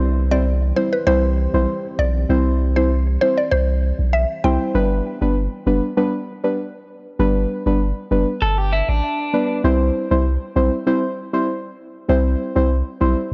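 Dancehall at 98 BPM in G major, this excerpt has a sunny, summery feel, moving from C to G at 4.7 seconds and back to C at 9.6 seconds. A punchy sine sub bass with a pitch-drop attack sits up front for the whole clip, joined by deep, mellow chord stabs that are soft and dark, shaped by a filter sweep and coated in chorus. In the opening seconds a woody, round mallet-like synth pluck carries the melody through chorus, phaser and analog delay, while a moody, detuned ambient pad hovers in the background with tremolo and its own reverb until 4.7 seconds. Around 8.4 seconds a clean, compressed twelve-string electric guitar briefly picks out arpeggios through analog delay. The whole recording has a dry, gritty cassette-tape character with a rolled-off top end and only light room reverb.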